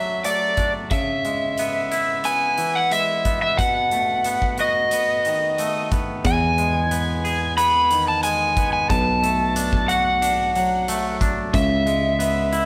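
Heard in a moderate stone room with the band playing live, this soaring, euphoric post-rock excerpt moves at 90 BPM in a straight 4/4, with an up-front overdriven slide guitar carrying the melody over clean, twangy fingered electric guitar arpeggios and a huge arena drum kit of hi-hat and punchy kick in a pumping room, joined at 6.2 s by a growly picked electric bass as the chords pass through Bm7, C#m7, B7 and Emaj7.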